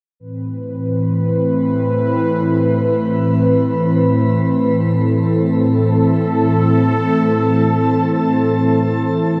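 Mysterious and expansive, this ambient fragment drifts in free time, cut from a longer piece. A single sweeping resonant pad carries it from 0.2 to 9.4 seconds, holding sustained chords on an Amadd9 harmony. Its detuned sawtooth tone is bright and evolving, with a soft attack, a filter swell and a long release, and chorus lends it extra breadth. The pad sits up front, spanning A2 to B4. A wet shimmer reverb with a 7.5-second tail surrounds it, giving the sound a vast, glimmering space.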